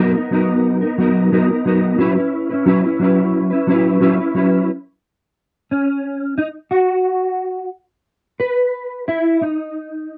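A straight 4/4 pulse at 89 BPM gives this short indie pop fragment an unhurried, drifting pace, its hazy, dreamy mood carried entirely by a single mellow electric guitar. Playing alone for the full 10.2 seconds, the fingered guitar sits up front with a dark, clean tone, spanning F#3 to B4. An ensemble chorus and vibrato effect lend its notes a shimmering, wavering quality. The harmony opens on Bmaj7/F# and moves to F#7sus4 at 2.0 seconds, then at 4.7 seconds the chords fall away as the guitar carries a clean solo passage to the end. The sound is dry and close in the manner of a 1970s studio, touched only by light reverb, and the fragment is cut from a longer piece.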